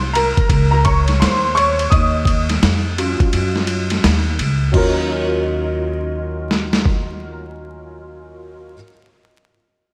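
Mellow and nocturnal, this short jazz-hop excerpt cut from a longer piece moves at 85 BPM in 4/4 with a swung sixteenth-note feel, resting in E-flat Dorian on an Ebm7 chord. An intimate upright piano sits up front with a polished, present tone, long sustain and audible action noise, colored by an ensemble chorus, and takes a solo through the opening section. Beneath it, a pizzicato acoustic upright bass with steel strings supplies a woody, warm low end. The dusty soul sampler-style drum kit is gritty, compressed and overdriven, re-recorded in a small room and placed up front, with a thumpy kick, medium-tuned snare, hi-hat, ride and crash. The kick drops out from 3.3 s until a second section begins at 4.7 s, and the drums stop at 7.1 s while piano and bass carry on. A lush hall reverb and vinyl crackle soak the whole mix in a dreamy haze.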